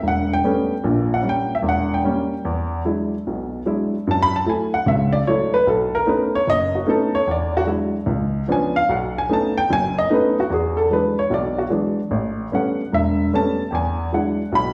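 Swung eighths at 149 BPM in 4/4 carry this sophisticated jazz excerpt, in which a solo baby grand piano with a warm, intimate, natural tone, short sustain and audible action noise spans E1 to B5 over chords moving from A9 through E9, F#m7, B9 and C#7b9 in E mixolydian, heard from further back within the wet bloom of a large studio reverb.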